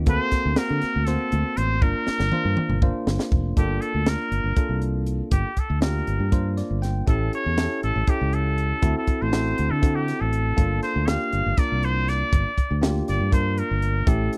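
A trumpet with a straight mute carries the melody in this funky, driving slice of electric jazz fusion. Its nasal, vintage tone opens into a solo at 3.6 s, as the music settles into G dorian. The tempo is 240 BPM counted in eighths, in a straight 7/8 that keeps the groove restless. A fretless electric bass sits up front with a dark, round sound and a subtle chorus, while a crisp drum kit with a punchy kick and high-tuned snare drives the pulse and adds a fill from 1.8 s. A bell-like tine electric piano plays clean accompaniment and slips in a short fill at 6.3 s, over harmony that moves from Gm9 through A7 and D9. A small room and a close, dry 1970s-style studio sound give this cut from a longer piece an intimate, polished feel.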